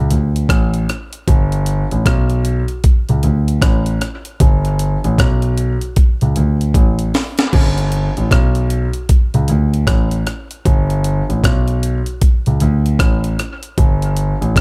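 A laid-back, swung 16th-note groove at 77 BPM in 4/4 anchors this spacious dub reggae piece, carried by a gritty, compressed breakbeat drum kit with a thumpy kick, high-tuned snare, rim click, hi-hat and crash, which breaks into a fill from 6.7 to 7.5 seconds. Holding down the bass line between G1 and D2 is a dark, mellow concert grand piano with a smooth, vintage character and short sustain. Both parts sit up front in a dry mix, in a section cut from a longer piece.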